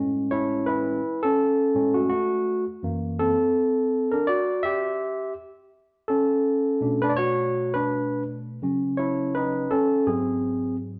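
A bright, barky tine electric piano opens this relaxed, cool hip hop cut alone, playing clean and up front through a combo amp at 83 BPM with a 16th-note swing, moving in A major from Amaj7 through F#7alt, Bm9 and C#m11 to G#7 across 11 seconds in a wet stone room reverb that gives it a live, one-room feel.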